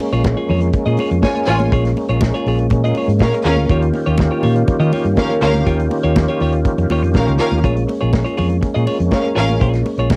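A glamorous, driving disco groove opens with a clean, compressed semi-hollow guitar, a gritty overdriven tonewheel organ with chorus vibrato and a slow rotary speaker, a dark, tight-kicked studio drum kit and high-tuned congas sitting close and dry in the background, all moving between Bbm7 and Eb9 chords. A round, amped fingered bass sits up front, and from 1.2 seconds a lush, focused string section with vibrato carries a second line until 9.6 seconds. The cut from a longer piece is a home recording on cassette, with tape coloring the guitar, organ, drums and strings, and light reverb.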